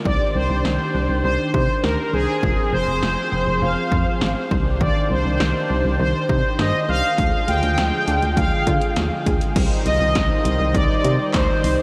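A punchy analog drum machine of kick, snare, handclaps, hi-hat and crash sets a straight 4/4 at 101 BPM under this nocturnal, cool synth-pop piece in C minor, where a round, dark FM bass anchors a chorused brassy pad holding sustained chords, a fat, up-front synth brass carries the melody through tape echo, and a very quiet, detuned pluck traces arpeggios until 9.5 s, the whole mix soaked in a huge, dreamy reverb.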